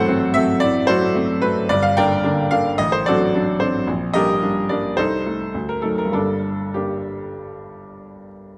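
Pushing and pulling in a free rubato over four beats to the bar, this brief excerpt of a romantic classical character piece for solo piano sounds bittersweet and passionate. A bright, brilliant baby grand with a natural, short sustain sits up front and spans from low bass to the upper middle register, moving from a diminished opening chord through dominant and diminished colours before settling home at 6.1 seconds. A wet scoring-stage reverb surrounds the instrument, and a faint mains hum lies underneath.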